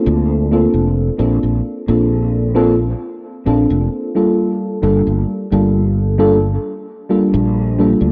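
A mellow FM electric piano provides the accompaniment in this short vaporwave fragment, its round, soft tone carrying a faint noise layer, a fast attack and a decaying tail, colored by subtle chorus and analog delay. Beneath it, a sustaining fretless electric bass enters at 0.1 seconds with a growly, direct, amped sound, thickened by ensemble chorus and sitting up front alongside the keys. The music moves at a slow 66 BPM in straight 4/4, in G minor, tuned slightly flat with A4 at 435 Hz. The harmony rests on a Bbmaj7 before settling onto Gm7 at 4.4 seconds, giving the passage a nostalgic, melancholic mood. Light reverb and digital ambience surround a dark, warm production with a cassette tape character. Cut from a longer piece, it runs to 8.1 seconds as a single section.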